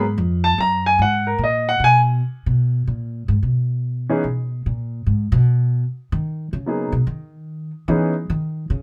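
A light reverb gives this short jazz cut a close, intimate room, with both instruments sitting up front in a smoky, late-night mood. It swings in three, and a warm baby grand piano carries the melody while a woody, pizzicato upright bass with steel strings holds down the low end. The piano takes a brief solo spot over the opening 2.2 seconds, voicing rich minor colours such as a ninth chord. From 2.2 seconds the upright bass steps forward for its own acoustic solo, running through the rest of the cut as the harmony passes through a stretch with the chords dropped out. The piano drops in for a fleeting touch at 4.1 seconds, then returns with a short phrase at 6.7 seconds, touching a rootless added-ninth voicing before the cut ends.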